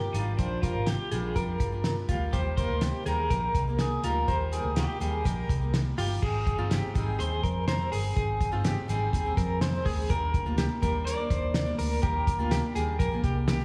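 A bright, twangy electric guitar through a small old amp carries the melody in this youthful, breezy jangly indie pop cut, its slightly broken-up lo-fi tone touched with subtle chorus and slapback echo, while a direct-recorded clean guitar adds compressed arpeggios with tremolo. Underneath, a full-bodied jumbo steel-string acoustic picks out accompaniment over chords moving from Bb6 to Abmaj7 at 2.3 seconds, and a vintage foam-muted fingered bass gives round, punchy low end. An up-front, cloth-damped drum kit with a fat snare, tight kick and dark cymbals thuds along from 0.1 seconds, the whole mix set in a concert-hall reverb with a big arena sound and a layer of vinyl crackle, shifting into a new section at 6.2 seconds.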